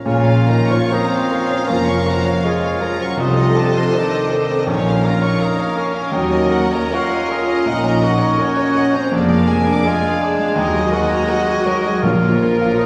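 Moving at 81 BPM in 4/4 with a free, rubato pulse, this brooding, tragic romantic movement for piano and orchestra in Bb minor is cut from a longer piece. A clear, intimate baby grand piano carries the melody with audible action noise and long sustain, joined by a soft-attacked chamber violin section sitting in the background. Second lines come from a mellow cor anglais, a rich, expressive violin section reaching up to D6, and a distant, roomy clarinet, while a dark bassoon and a very quiet, lush viola section fill in the accompaniment beneath a mellow French horn section holding sustained chords. The bass rests on a focused double bass section and a distant, expressive cello section, and a very quiet, dry timpani with hard mallets sounds on Bb2 at 4.7 seconds and again at 12.0 seconds. The harmony moves from Bbm through Adim/C, Ebm7 and Ddim/F before returning to Bbm, all bathed in a wet recital-hall reverb.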